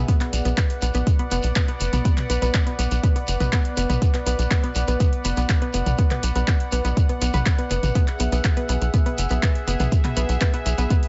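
This hypnotic, melancholic melodic techno excerpt opens on a bright, evolving sawtooth pad holding sustained chords through chorus, a round analog pluck spinning arpeggios with chorus and delay, and a tight, nasal sequencer bass sitting up front, all three pumping with sidechain. A deep, up-front electronic kick and a tape-tinged deep house kit of handclaps, metallic hats and toms join at 0.1 seconds in a small room, with a grainy, compressed shekere tucked low beneath them. The harmony moves from Bm to Eadd9 at 8.0 seconds, and the whole mix has a rolled-off top softened by light reverb and digital ambience.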